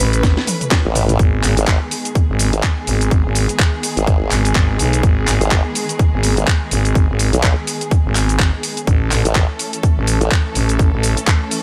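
Swaggering and gritty, this bass house excerpt moves at 125 BPM in G# phrygian with a swung 16th-note feel, built on a growling, thick FM bass with overdrive and a tight, up-front electronic kick that enters at 0.2 seconds alongside a brief drum fill. A garage kit of cracking snare, bright hats, handclaps, cabasa and toms drives the groove, while a sawtooth wobble bass with a formant filter and chorus joins at 0.9 seconds, both basses pumping against the kick. Behind them a dark, woody string section with vibrato holds lush bowed chords moving from A to G#m and back, all set in a digital ambience.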